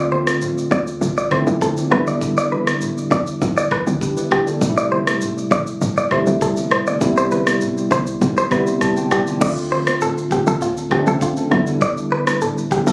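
A bright, twangy clean electric guitar sits up front with a compressed, picked riff touched by delay, alongside a warm tine electric piano that adds a fill from 8.5 to 9.4 seconds before the chords cycle back to Dm7 at 9.4 seconds. This mellow, hypnotic afrobeats groove at 100 BPM in D dorian rests on a punchy, woody log drum bass with a fast, decaying attack, a deep house drum kit with a deep kick, rim click, shaker and crash, and thick-skinned, low-tuned congas far in the background. A moderate plate reverb and the roomy sound of a phone capturing the studio give this cut from a longer piece a slightly distant, ambient feel.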